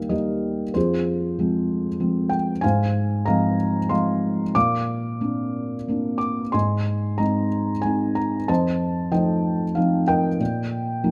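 Close, detailed microphones and a light reverb put a felt-muted upright piano up front, its thick felt giving a soft, dark, intimate tone with the action noise clearly audible. This is a lyrical classical solo piece in 3/4 at about 93 BPM, played with a free, rubato feel. The piano plays alone for the full 11.1 seconds, spanning Eb2 to D6 with a mellow, muted touch. The harmony moves from Eb through Fm, Ab6 and Bbadd9 to Ab and F7, reaching Bbsus4 at 10.4 seconds, where the fragment breaks off from a longer work. The mood is hopeful and warm, like a private moment at the keyboard.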